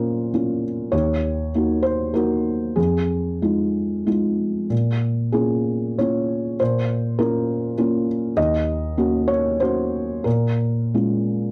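A felt-muted upright piano, soft, dark and intimate with thick felt, audible action noise and short sustain, plays alone and up front through a reflective, melancholic neoclassical minimalist passage in a rubato 3/4, moving through minor seventh chords over this 11.5-second excerpt from a longer piece, set in moderate studio reverb and colored by the warbly pitch drift of worn old cassette tape.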